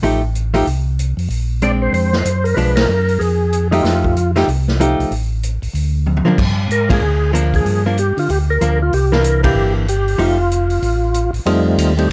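Soul jazz organ trio in F mixolydian at 189 BPM, bluesy and greasy with a swung feel, where a percussive, lightly overdriven tonewheel organ with slow rotary speaker, chorus vibrato and plate reverb carries the melody from 1.6 seconds over a round, key-clicking organ bass line, clean picked hollow-body archtop guitar accompaniment, and a distant, roomy big-band drum kit with dark cymbals and a boomy kick that adds a fill at 6.1 seconds, with band accents landing at 2.7, 6.9 and 9.4 seconds as the changes move through F9, Bb9 and Bdim7 in this cut from a longer piece.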